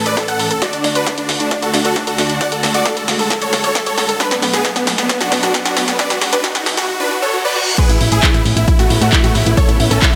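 Huge, detuned supersaw chords lead this euphoric, soaring uplifting trance excerpt at 134 BPM in A major, pumping with sidechain and trailed by digital delay, while a very quiet analog pluck traces a second line and a distant, bowed symphonic string section holds sustained chords underneath. A punchy, tape-toned analog drum machine with crash, handclaps, hi-hat and snare sits up front beside an electronic kick, driving a build-up with a drum fill while a very quiet riser and reverse cymbal, entering at 3 seconds, lead into the drop at 7.8 seconds. There a round, mellow FM bass with tube saturation enters at 7.9 seconds as the chords return to Aadd9, all set in a lush hall reverb.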